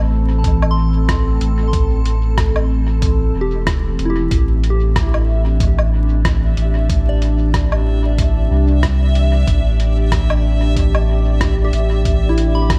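A deep, round sub bass sits up front, its mellow sine tone holding a sustained Cadd9 foundation in this meditative ambient dub fragment. Around it, a dark, organ-like additive pad drifts through detuned, slowly evolving chords, softened by ensemble chorus and its own reverb, while a gentle FM synth bell traces pure, decaying arpeggios colored by chorus, phaser and tape echo. At 0.4 seconds a muffled, pitched-down electronic kick thumps in the background, alongside a compressed, lo-fi sampler-style kit of hi-hat, rim click and woodblock whose hits trail off into dub echo over a lightly swung 16th-note feel. From 5.0 seconds a reversed, granular texture swells in on a single bright, dreamy high note with a long reverb tail. A layer of vinyl crackle runs throughout, lending the whole fragment a dusty, intimate surface.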